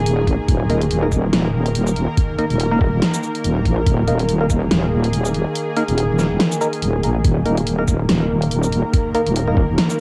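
A half-time 142 BPM groove in 4/4 swings its sixteenths, with an overdriven, up-front dubstep kit of huge snare, bright hats and shaker running throughout, while a gritty, thumpy, pitched-down kick falls away at 4.6 seconds and returns at 7.2. Alongside it sit a heavy, saturated wobble bass with chorus, a tense, nasal, string-like drone holding sustained chords with vibrato and its own reverb, and a hollow, mellow organ stab decaying through chorus, phaser and dub echo. This brooding, meditative deep dubstep fragment, tuned to A4 = 436 Hz, has the character of a home cassette recording set in a moderate spring reverb.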